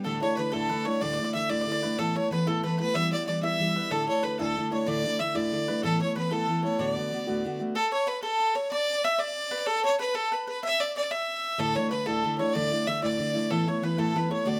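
Rollicking and cheerful, this Celtic jig in 6/8 is cut from a longer piece. A clear, intense fiddle carries the melody up front with light vibrato and a smooth top, while a round, double-strung mandolin picks a second line. A bright, full-bodied jumbo steel-string guitar accompanies up front with audible finger squeak; it drops out at 7.8 seconds as the opening section repeats and returns at 11.6 seconds, all captured by close, detailed microphones in a moderate studio reverb.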